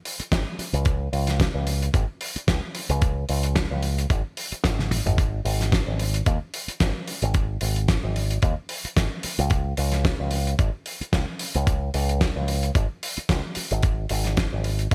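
A swung 111 BPM groove in 4/4 drives this cosmic, sleek nu-disco excerpt, where a gritty, thumpy electronic kick sits up front beside a damped 70s drum kit with a fat snare, hi-hat and toms under gated reverb (with a drum fill at 4.8 seconds), while a punchy picked electric bass pumps through an envelope filter between G#1 and D#2, all inside a bright 1980s-style digital production with light reverb.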